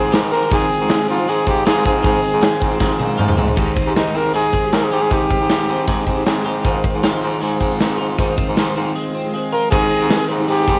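Breezy and youthful jangly indie pop, cut from a longer piece, where a pop-style trumpet with light vibrato carries the melody until 6.3 seconds and returns at 9.5, over a shimmering, octave-doubled picked twelve-string acoustic guitar in the background, clean, compressed twelve-string electric guitar arpeggios with subtle chorus, a raspy, gritty baritone saxophone holding the bass, and a big, punchy rock drum kit up front that plays a fill from 2.8 seconds, with cassette-tape coloring on the trumpet and guitars and studio reverb over a homemade recording.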